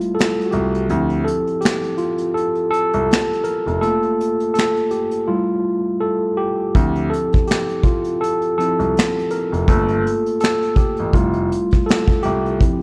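Reflective and nostalgic, this lo-fi hip hop excerpt in D minor moves at 82 BPM in 4/4 with a gentle 16th-note swing. A clean tine electric piano takes the solo throughout, heard through its built-in speakers with cassette tape colour and a low-pass filter, over Fmaj9, rootless Dm7 and Gm9 chords. A vintage brush drum kit plays finger snaps, hi-hat, a punchy kick and a medium-tuned snare in a small room with a rolled-off top, while a grand piano with long sustain carries the low bass line from 0.5 seconds, all set in a dark, warm mix with light reverb and a silent gap from 5.3 to 6.8 seconds.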